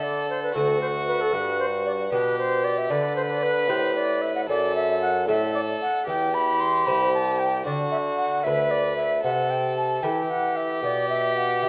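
A straight 12/8 pulse at 76 BPM in dotted quarters drives this dance-like, flowing baroque-style sonata movement in G major, tuned to A4 = 436 Hz and cut from a longer piece. A close, nasal violin with gut-string tone carries the melody up front, while an airy wooden baroque flute with vibrato and a crisp attack sings a higher second line, a delicate fingerpicked lute with double gut strings fills in the continuo harmony, and a mellow bassoon with light vibrato anchors the bass. The 11.7-second passage moves from D7 to G and on through a chain of inverted chords ending on G/B, all set in a wet recital-hall reverb.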